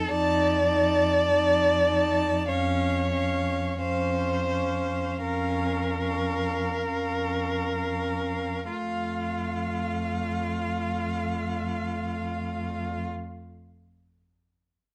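The first violin carries the melody high above the quartet with a rich, expressive tone, soft attacks, vibrato and gliding portamento. This is a serene, lyrical slow movement for string quartet, cut from a longer piece and played with a flexible, rubato feel in four. The second violin sits up front with a focused, warm second line, while the viola supplies smooth, even accompaniment. The cello holds the bass on a low F from 0.1 seconds, close and prominent, with its own soft attacks, vibrato and portamento. The harmony moves from F7 to a darkening Bbm over F, and the music slows through its opening phrase before settling onto a plain F chord at 8.7 seconds as a new section begins. Light reverb gives the bowed strings a gentle sense of space.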